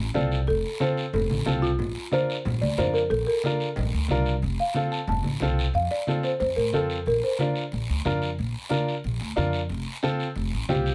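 A dark, thumpy pizzicato upright bass opens this sunny, danceable cumbia excerpt, joined almost at once by a clear, up-front upright piano, ringing low-tuned congas and a raspy guiro. A mellow folk marimba with soft mallets carries the melody as a featured solo through the first section, its dry, rustic tone sounding like a boxy small room, and it drops out at 7.9 seconds while the band grooves on through the second section. Light reverb gives the mix a gentle sense of space, and the chords move between F and B-flat.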